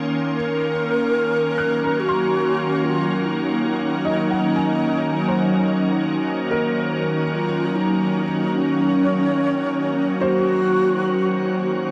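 A straight 4/4 pulse at 73 BPM carries this spacious, serene ambient piece in Eb dorian, tuned to A4 = 445 Hz, where a bright, up-front organ-like pad with ensemble chorus and a warbling, detuned edge holds sustained Ebm7 chords, a felt-muted upright piano with audible action noise plays soft arpeggios in the background through tape echo, and from 0.3 s a breathy alto flute with vibrato sings a distant, unsteady melody, the mix set inside a wet shimmer reverb and cassette-tape grain.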